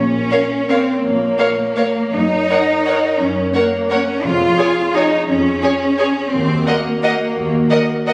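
Up front and close, a rich cello section carries the bass of this sweeping, bittersweet orchestral ballroom waltz in Bb minor, moving with rubato at 156-189 BPM in 3/4 alongside a smooth double bass section and sustained chords from a warm French horn section, while from 0.3 s a distant, focused violin section sings the melody over a dark, portamento-laden second violin line and lush, even violas, with a brief hard-mallet timpani stroke at 4.2 s, the whole ensemble bathed in wet concert hall reverb and heard as a phone recording cut from a longer piece.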